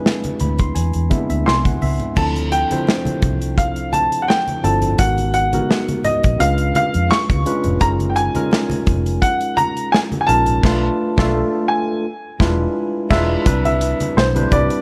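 The recording has an intimate, small-room sound, with the piano, electric piano and drums placed up front and the congas set back in the background. This cut from a longer piece is lush 1970s-style soul at 85 BPM in 4/4, with a gentle sixteenth-note swing and a cinematic, bittersweet mood. A dark, mellow baby grand carries the melody between C5 and C#6, its short sustain and audible action noise giving it a natural closeness. A worn, slightly out-of-tune tine electric piano plays a fill over the opening E7b13 before settling into accompaniment, heard clean through its built-in speakers. A smooth acoustic kit with a tight kick, medium-tuned snare and rolled-off top sits beside a round, punchy foam-muted fingered bass and thick-skinned, low-tuned congas. The harmony moves through rich chords such as Dm9, G#m9 and F#maj13, and the band accents from 10.6 seconds over Bm7b5 and E7b9 before resolving onto Cmaj9 at 13.5 seconds.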